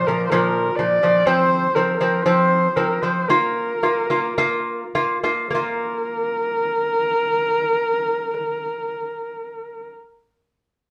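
Proud and vast, this short Mongolian folk passage, cut from a longer piece, moves at a slow 50-65 BPM in a straight 4/4 and slows down over its first 5.5 seconds. A dark, husky horsehead fiddle carries the melody from start to finish, its single bowed player drawing a woody, smooth-topped tone from horsehair strings with vibrato and portamento. Beneath it, a lute plays fingerpicked arpeggios throughout, its gut and double strings, some doubled at the octave, giving a delicate, acoustic sound. Both instruments sit up front, heard as a band playing live in one room with a wet studio reverb. The harmony rests on Bb5 and F5 chords, and a second section begins at 5.5 seconds.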